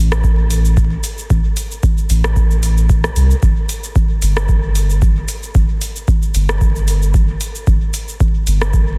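A round, soft dub sub bass sits up front in this nocturnal, cavernous dub techno excerpt, its triangle- and square-wave tone moving between G1 and C2 with fast attack, long sustain and sidechain pumping. An electronic kick drum with a deep analog thump shares the forefront from 0.2 seconds, re-recorded in a large room. Further back, a booming analog drum machine adds cabasa, metallic hi-hats and rim clicks, with soft clipping on its snare and a dub echo trailing its hits. The groove runs at 113 BPM in 4/4 with a 55% swing on the sixteenths, holding one section throughout its 9 seconds. The dense, heavily limited modern master keeps reverb sparse and lays a bed of vinyl crackle over the whole piece.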